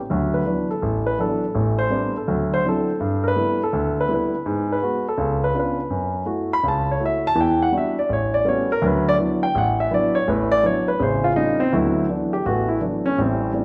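Relaxed and playful, this short solo jazz passage cut from a longer piece swings at 165 BPM in 4/4 in D major, tuned slightly low to A4 = 438 Hz. A dark, mellow grand piano sits up front and carries everything from 0.1 s, ranging from A1 to B5 through rich extended harmonies such as D69, Am11, C#7b9 and A13, with an augmented A7 at 11.0 s turning back home to D69 at 11.7 s. The instrument rings in a reverberant recital hall, giving the brief recording the spacious glow of a church or concert hall.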